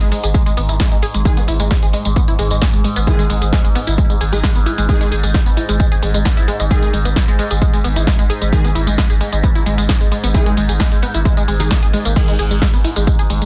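This driving peak-time techno excerpt runs at 132 BPM in a straight 4/4, its relentless, hypnotic pulse anchored by an overdriven, layered electronic kick drum that sits up front from 0.3 seconds. Around it, a punchy analog drum machine supplies crash cymbal, hi-hat, snare and tambourine with a tape-kissed snare, while a deep, saturated sine sub bass holds G#1 under overdrive and a low-pass filter, shaped by sidechain pumping. A tight, sequenced sawtooth riff with detuned voices and a filter pluck spans G#3 to G#4, its mellow tone thickened by chorus, overdrive and delay. Beneath it, a resonant drone on G#2 blends sawtooth and sine with slow attack and long release, its overtones moving through phaser, chorus and reverb. From 1.3 to 12.3 seconds, aggressive unison rave stabs spanning D#3 to G#4 decay in the background, coloured by cassette tape, chorus and digital delay, all within a dense, heavily limited modern master with light digital ambience.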